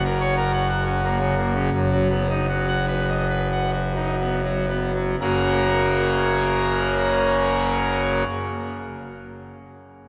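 In a straight 4/4 with a tempo that ranges from 57 to 95 BPM and slows over the first 5.2 seconds, this majestic, jubilant organ toccata unfolds in F# major. A single pipe organ plays alone on full organ from the start until 8.2 seconds, its brilliant mixtures and baroque voicing spanning F#1 to F#5, with a crisp chiff on the pipes and the instrument placed up front. The harmony rests on F#, moves to B over an F# bass at 1.7 seconds, and returns to F# as the second section begins at 5.2 seconds. A cathedral reverb with a long 4.6-second decay surrounds the organ and gives it a grand, resonant space. Cut from a longer piece, this short excerpt captures a stately, celebratory moment of sacred grandeur.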